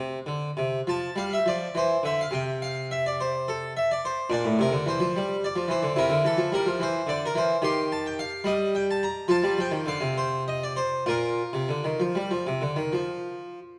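A solo harpsichord sits up front in this short passage cut from a longer baroque-style suite movement, its airy, plucked tone given a full body by two sets of strings in the French manner. The mood is radiant and dance-like, moving in a lilting 12/8 with uneven beats and a free, rubato feel that lets the phrases breathe. The instrument spans from low A2 up to C6, and the music settles into its main section almost at once, about 0.9 s in. The harmony travels through a series of changes, taking on a more colourful turn as the key shifts to B-flat major around 7.6 s before coming back to firmer ground. A resonant recital hall surrounds the playing with a generous reverberant glow, and the passage runs to 13.8 s.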